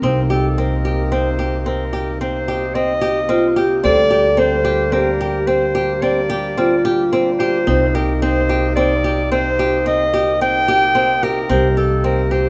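Heard in a moderate recital hall reverb, this urgent, hypnotic contemporary chamber piece in 7/4 at 110 BPM in C dorian puts two parts up front, a smooth-topped classical clarinet carrying the melody and fingerpicked flamenco guitar arpeggios with audible finger squeak, while a metallic, ringing vibraphone played with medium hard mallets and motor off adds a second line, a growly, woody pizzicato upright bass holds the low end, and a reedy, breathing harmonium sustains mellow chords that move from Cm7 to Bb69/D at 3.8 seconds and back.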